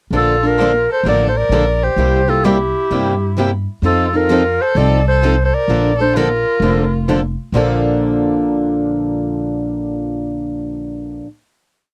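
A dry, close 1970s-style studio sound frames this short, lively and playful piece of acoustic string swing in Bb major, moving at 130 BPM with a swung eighth-note feel. A mellow, close-miked clarinet with vibrato, scooped notes and a touch of slapback echo leads with song-like motifs, shadowed by a nasal, bowed violin that adds an expressive harmony line mostly in thirds with portamento, while a woody, thumpy upright bass plays two-beat root and fifth with walk-ups. Two picked acoustic guitars drive the rhythm, one in four-to-the-bar chords accented short on two and four and a brighter, boxy second guitar with finger squeak, and after clarinet and violin drop out at 7.1 seconds the rhythm section rings out a final chord until 11.3 seconds.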